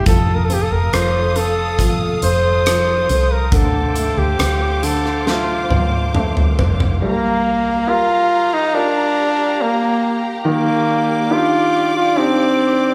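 A solo flugelhorn carries the melody from the opening moment of this longing, melancholic pop ballad, sitting up front with a close-miked, clear tone and light vibrato. Beneath it, a present grand piano plays the accompaniment, while a lush bowed string ensemble holds sustained chords, sounding focused and distant. A dark, round, foam-muted electric bass with an amped, vintage character plays alongside a huge acoustic drum kit that brings hi-hat, rim clicks, toms, a fat snare and a punchy kick. The drums play a fill from 5.3 seconds, and both bass and drums drop out at 7.0 seconds, leaving the flugelhorn, piano and strings to carry the rest of the passage. The band sounds as if it is playing live in one room, bathed in a wet, large studio reverb, and the passage is cut from a longer piece.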